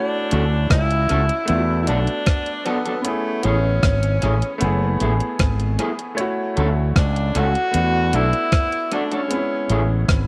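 A roomy tenor saxophone carries the melody in this smooth, romantic lovers rock reggae excerpt, its vibrato-rich, pop-style tone sitting up front with a tape echo behind it. A baby grand piano accompanies from the very start, brilliant and intimate, with its action noise audible and a tape echo of its own. From 0.3 seconds an electric guitar through a small old amp adds twangy, slightly broken-up picked stabs, while a fretless electric bass, bright, direct and amped, holds the low end prominently. A crisp 8-bit drum machine plays hi-hat, a thumpy kick and rim click in a straight 4/4 feel, sounding sampler-style, overdriven and echoed close in the mix. The harmony moves through major-seventh, suspended ninth and minor eleventh chords under a light reverb, in a short passage cut from a longer piece.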